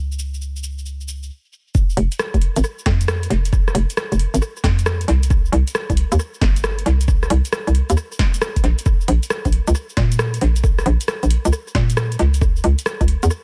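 A hollow, bouncy FM bass with tube saturation anchors this moody, late-night two-step garage excerpt at 135 BPM, its punchy, fast-attack notes sitting up front over a swung 16th-note groove. A garage kit of cabasa, rim click, woody snare and metallic hi-hats, bathed in tape echo, runs alongside it, and after a brief stop from 1.3 to 1.7 seconds the drop arrives with a knocking electronic kick, also up front. The mix is dry in terms of room sound but heavy with echo.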